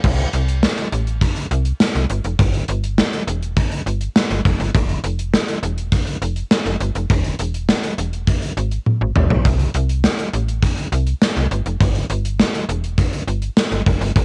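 A slap-like FM bass and a gated 1980s drum kit start together at once in this glossy, romantic pop groove in a straight 4/4, cut from a longer piece. The bass sits low and up front, with a snappy, metallic attack and a digital tone that decays after each note. The acoustic kit also sits up front, its punchy kick, medium-tuned snare, toms, hi-hat, crash and tambourine framed by a gated, bright stone room and bright cymbals, with a cassette-tape colour on the drums. A short drum fill arrives at 8.9 seconds before the groove carries on to the end at 14.2 seconds. A moderate spring reverb and the homespun feel of a cassette recording give the whole track a glossy sheen.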